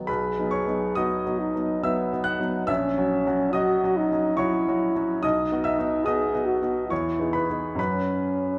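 In a triple metre with a supple, rubato feel, this tender, lyrical romantic duo begins with the grand piano at 0.0 seconds and the French horn joining at 0.1 seconds. The solo horn carries the melody with a warm, classical tone and light vibrato, while the piano accompanies with a clear, intimate, natural sound placed up front, its action noise audible. Both sit in a wet recital-hall reverb, and the passage, cut from a longer piece, moves through B, F#7/A#, back to B, then Emaj7 and F#5 before it ends at 8.6 seconds.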